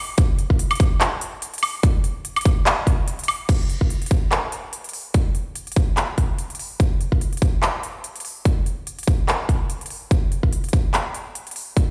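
A swung, half-time 4/4 groove drives this bittersweet, dreamy future bass fragment, where a punchy, overdriven electronic kick sits up front beside a layered big-room dance kit of crash cymbal, handclaps, crisp hi-hats and woodblock, both carrying studio reverb and heard through a big sound system in a bare stone room, opening on a drop that gives way to a brief break at 3.1 seconds before a new section takes over at 3.5 seconds.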